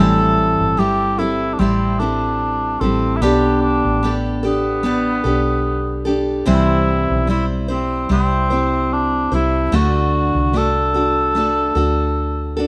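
A mellow cor anglais carries the melody with light vibrato and a soft attack from the first moment, set over a picked steel-string acoustic guitar with a full-bodied dreadnought tone and a woody, round fretless electric bass, all three up front in a light reverb. This easy-going, sunny pop excerpt moves at 74 BPM in G major with a gentle sixteenth-note swing, cycling through Am7, Gadd9, C and D. The guitar's accompaniment spans the broadest range while the bass sits dark and hollow-bodied beneath the cor anglais's smooth, classical-style line.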